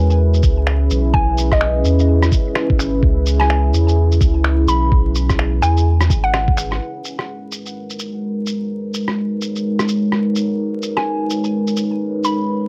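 Nocturnal and wistful, this future garage excerpt at 127 BPM in G# minor swings its 16ths as a dark, wave-folded ambient pad with 12-bit sampler grit and sidechain pumping sustains C#m7 and then G#m11, a woody, warbling FM mallet pluck carries the melody through analog delay and plate reverb, a round sine sub bass with tube saturation sits up front beside a thumpy, pitched-down kick until both fall away near 6.8 seconds, and a muffled shaker, finger snaps and rim click carry on with cassette-tape colour, all set in a small booth with the vinyl crackle of a home recording.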